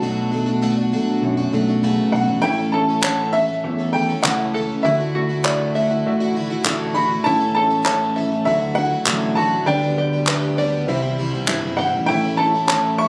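Straight 4/4 indie folk with a hopeful, uplifting, building arrangement, where a woody, boxy upright piano carries the melody up front over a fingerpicked steel-string acoustic guitar that drops out at 4.9 seconds, a shimmering octave-doubled twelve-string, and a dark, round electric bass, before an intimate concert grand piano with audible action noise and a plunky, twangy open-back banjo playing arpeggios arrive at 2.4 seconds and hollow group handclaps join at 3.0 seconds, the whole piece set in a small-room ambience with light club reverb and the feel of a phone recording made in the room.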